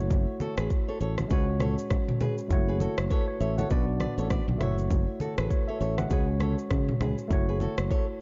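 A worn, slightly out-of-tune tine electric piano heard through its built-in speakers and a punchy, up-front fingered electric bass open this smooth, sultry afrobeats cut in F# minor at 100 BPM with a swung 16th feel, joined by an electronic afro-pop drum kit with a deep kick, rim click, shaker and toms carrying vintage 12-bit sampler grit, by bright, damped, low-tuned congas sitting in the background, and at 0.4 seconds by a fingerpicked flamenco guitar riff on fresh strings bathed in tape echo, all over a dark, warm small-room sound circling F#m7, C#sus4 and Bm.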